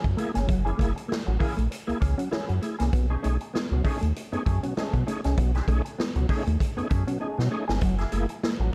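Funk with a gritty, energetic mood and a loose 16th-note swing, this short clip is cut from a longer piece. A round, deep analog bass sits up front with a fast attack and sustained notes, while a punchy, natural acoustic drum kit with a medium-tuned snare drives the groove on hi-hat, kick and snare. One mellow, clean electric guitar plays a compressed, fingered accompaniment through wah and subtle chorus, and a second fingered guitar enters at 0.2 seconds with a riff placed in the background. An overdriven tonewheel organ adds thick, percussive stabs coloured by chorus vibrato and a fast rotary speaker. The harmony moves from F#9 to B13 and back to F#9, with a drum fill from 7.2 to 7.8 seconds, all in a dark production with light reverb and small-room ambience.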